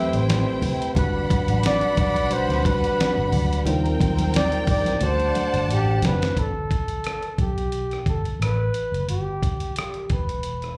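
A swung sixteenth-note groove at 89 BPM in 4/4 drives this lush, smooth slice of 1970s-style soul in G major, tuned slightly flat of concert pitch. A dusty, sampler-style drum kit sits up front with a thumpy kick, fat snare, rim click and hi-hat, its compressed, gritty sound re-recorded in a large room. Under it, a dark, round, foam-muted electric bass holds the low end. A mellow flugelhorn carries the jazz-style solo melody with light vibrato. A bowed symphonic violin section adds a smooth, focused second line, and a worn, slightly out-of-tune tine electric piano supplies clean accompaniment, both touched with slapback echo like the horn, while bright, close congas sit very quietly in the background. Chords move from Am9 through Gmaj7, Eb69 and D7, a drum fill from 5.7 seconds leads into a G6 passage at 6.4 seconds where strings, keys and congas have dropped out, and the horn, bass and drums carry on to 10.8 seconds, all heard as a live club performance through the venue's PA with light reverb.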